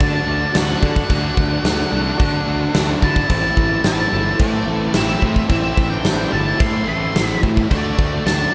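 Swaggering and driving, this classic rock excerpt from a longer piece moves from D to Am and back, with an octave-fuzz lead guitar carrying the melody while a smooth, bright overdriven lead guitar with slapback echo plays a second line in the background. Two double-tracked distorted electric guitars drive the riff: one bright and set back with slapback echo, the other compressed and very quiet. Underneath sit a round, punchy fuzz picked bass, a reedy electric piano with tremolo, and a huge, up-front arena drum kit with a fat snare, punchy kick and bright crash cymbals in a big natural room, all with light reverb.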